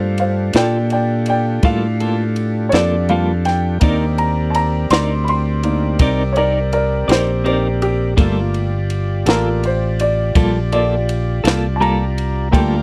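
A clear, woody upright piano takes the solo from the first moment of this smoky, brooding slow blues in G minor, its short-sustained notes set over a reedy tonewheel organ holding chords through a lightly overdriven tone, audible key click and a slow rotary speaker. A fingered electric bass sits up front with a direct, amped sound from the start. A compact cocktail drum kit enters at 0.2 seconds with a punchy kick, a high-tuned snare and ride cymbal, followed at 0.5 seconds by a clean, picked electric guitar whose compressed accompaniment carries a tremolo shimmer. The harmony moves from Gm9 to Cm9 and back to Gm9 at a lazy 55 BPM in a straight 12/8. The dry, close recording has a 1970s studio character, and this passage is cut from a longer piece.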